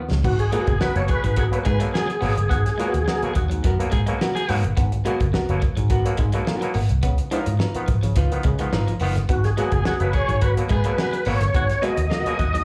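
A lightly overdriven tonewheel organ leads this hypnotic, sly funk groove with a full, key-clicking melody through slow rotary speaker and chorus vibrato, stepping out at 3.3 seconds and returning at 9.3 seconds, while a raspy, gritty tenor saxophone adds a second line alongside it. After an opening drum fill, the dark soul kit with its fat snare and tight kick sits up front with a round, foam-muted picked bass, as an overdriven clav jabs stabs through auto-wah, a hollow-body archtop guitar accompanies and a clean guitar riff sits in the background. The harmony moves from G#m9 to C#9 and back. It sounds like a live club gig heard through the venue's PA, with slapback echo on the guitars, clav, organ and sax, and this is cut from a longer piece.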